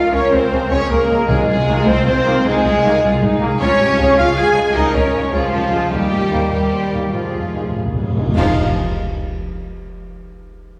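A swashbuckling orchestral cue in a rolling compound metre opens at once with its full body, with French horns holding warm sustained chords under a dark, lush violin section carrying the determined melody. Around them, violas add clear, focused accompaniment, a harp rings out fingerpicked arpeggios, and a trumpet punctuates with distant stabs, while a very quiet bright clarinet, an airy flute and a second, intense violin section trace faint secondary lines. Cellos and double basses anchor the bass with a smooth, even bowed tone, and a mellow trombone section soon joins the chords, with timpani striking briefly early on. The music broadens and slows through its second half, as a dark cymbal swell with clash cymbals and bass drum enters at 5.9 seconds, and a timpani fill from 7.1 seconds drives into an ensemble accent at 8.4 seconds. The orchestra sounds set back on a reverberant scoring stage, lending a heroic, spacious sheen to this fragment of a longer adventure score.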